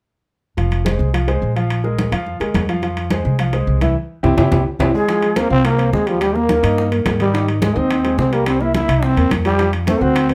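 A driving, straight 4/4 at 213 BPM propels this sultry Afro-Cuban jazz excerpt in F minor, where a woody, thumpy upright bass and a smooth, vintage grand piano sit up front over thick-skinned congas and ringing metal-shell timbales, until a drum fill at 4.5 s leads into a raspy, growling trombone melody with scooped notes from 4.9 s, shadowed by a breathy bamboo shakuhachi with slapback echo, while round, low-tuned bongos join in the background at 5.1 s.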